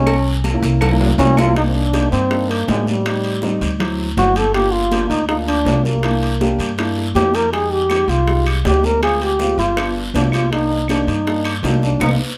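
Up front, a mellow trombone carries the melody with light vibrato and a punchy, forceful attack, its smooth top set in plate reverb, in this sultry, sophisticated slice of Afro-Cuban jazz cut from a longer piece. Alongside it, a dark concert grand piano offers vintage-toned accompaniment with deep bass and short sustain, while a woody pizzicato upright bass on steel strings sits close in the mix. The trombone opens with a brief solo passage as a drum fill arrives at 0.8 seconds, then the music moves through a richer stretch of minor-seventh and dominant chords. A dense percussion bed fills the background: ringing metal-shell agogo bells and timbales and very quiet high-tuned congas heard from a distant large room, tight cowbell and bongos in a smaller space, and a raspy, band-limited guiro. Woody claves drop out after the opening and return at 7.9 seconds, and the band closes on an accent at 12.0 seconds.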